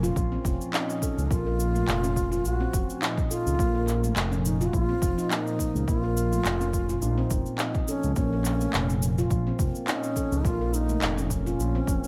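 Mystical and meditative, this organic downtempo excerpt at 105 BPM in Bb harmonic minor rests on a Bbm chord, with an ethereal, very quiet pad holding sustained chords, a ringing handpan playing arpeggios roughened by vintage 12-bit sampler grit and tape echo, a smooth gliding synth bass up front with vibrato and portamento, electronic cabasa and handclaps from the start, a punchy electronic kick joining them at 0.2 seconds, and a breathy, close-miked bass bansuri carrying the tongued, expressive melody with tape echo from 0.7 seconds, all in light reverb.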